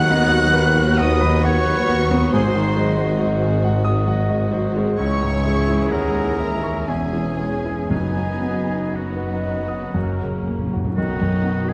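Classical and lush with a passionate sweep, this brief passage in B major moves in a rubato 3/4 at 56-69 BPM. A clear, intimate grand piano with audible action noise carries the melody up front alongside a distant, smooth violin section. Oboe, clarinet, an airy flute section and a second, softer violin section weave second lines, while rich violas, basses, a very quiet cello section and a tuba fill out the low end in moderate scoring-stage reverb. A dark French horn section and mellow trumpet stabs join at 2.3 seconds, hard-mallet timpani enter at 7.9 seconds, and a punchy bassoon appears at 11.0 seconds.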